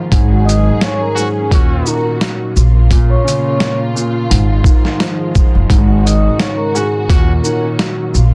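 A woody, gut-strung upright bass plays pizzicato up front in this dark, gritty boom-bap hip-hop excerpt at 86 BPM in Eb minor, riding a swung, compressed and pitched-down sampler drum kit that is also up front, with a thumpy kick, medium-tuned snare, hi-hat and shaker. A boxy, mellow grand piano with cassette-tape colour and a lush, bowed string section hold the chords underneath, while a ringing vibraphone with soft mallets and slow motor vibrato carries the melody through a digital delay from 0.3 s. A jazz-style trumpet section adds soft-attack stabs at 1.1 s and 6.7 s, all set in a dry, dense, heavily limited mix.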